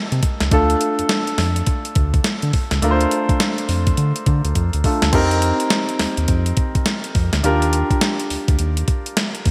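An intimate concert grand piano opens this bouncy, confident new jack swing excerpt, its polished chords sitting up front with long sustain and audible action noise as they move from Cm7 to Dm. Almost at once a round, deep analog bass with a detuned, dark edge and a thumpy, sampler-style 8-bit drum machine join in, the kick, snare, hi-hat and crash wrapped in gated reverb and driving a swung groove. A drum fill at 4.6 s leads into a new passage at 5.1 s over F7sus4 and Ebmaj7, all set in a lush hall reverb with bright 1980s-style digital production.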